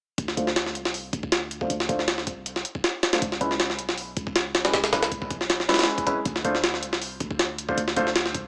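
Through a small-speaker sound with light reverb, this dark, frenetic drum and bass and jungle piece at 158 BPM in D dorian puts a gritty, pitched-up sampler-style jungle kit with a thumpy kick and high-tuned snare up front, over a deep, boomy 808-style bass with tube saturation, while clear, worn concert grand piano stabs enter at 0.4 seconds and move through a filter sweep and dub echo over Dm7 and C#m7 chords.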